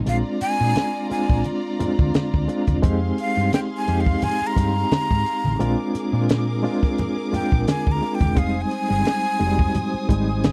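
A dry, close 1970s-style studio sound frames this bittersweet, silky soul excerpt in F dorian at 87 BPM with a light sixteenth-note swing, where a breathy, straight-toned jazz flute carries the melody over a reedy electric piano with fast tremolo, a round, punchy hollow-body bass, a dark compact cocktail kit with a high-tuned snare, low-tuned thick-skinned congas, and a smooth, softly vibrato violin section in the background, all moving between Bb7 and Fm7.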